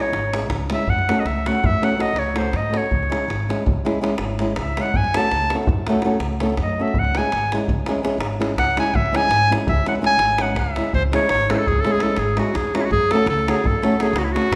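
A bright, classically styled clarinet and a small, fingerpicked nylon-string guitar open this bittersweet, fiery Balkan wedding-band excerpt in C# minor, both placed up front. The clarinet carries the melody as a solo through the first 10.9 seconds, ranging from E4 to A5 over the guitar's accompaniment, where an occasional finger squeak can be heard. Pizzicato upright bass with a woody, steel-string tone and a deep davul recorded in a live room enter almost at once, underpinning the music's 11/8 metre at 330 eighth-note beats per minute. The tempo speeds up across the piece, and the harmony moves between C#m and F#m before a new section arrives at 10.9 seconds. A lush recital hall reverb wraps the recording in a resonant acoustic space.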